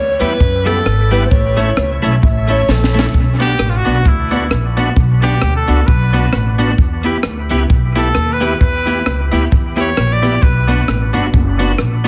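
A swung, driving ska groove from a compact cocktail drum kit, dry and dub-echoed with a punchy kick and high-tuned snare, rides on woody pizzicato upright bass, slightly broken-up picked electric guitar with subtle chorus, and gritty overdriven tonewheel organ stabs with key click and dub echo, while a distant, roomy alto saxophone solo with dub echo plays until 3.2 s and a bright, punchy, vintage trumpet solo with light vibrato runs from 3.4 s to 11.1 s, the whole energetic excerpt heard through a heavily compressed radio sound in a moderate club reverb.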